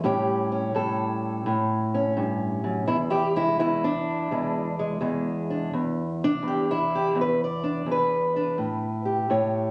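Swung eighth notes roll through a steady 4/4 in this short fragment of acoustic country blues, soulful and gritty in mood. A single fingerpicked steel-string acoustic guitar carries the whole piece, reaching from low E2 up to D5 across its 9.7 seconds. Its parlour-sized body gives a dark, boxy tone, and finger squeak on the strings adds a raw, close-up edge. The harmony moves from A7 to E7 at 2.9 seconds and back to A7 at 8.6 seconds. The guitar sits up front in a phone recording made in the room, with light club reverb and compression that give it the feel of a live club.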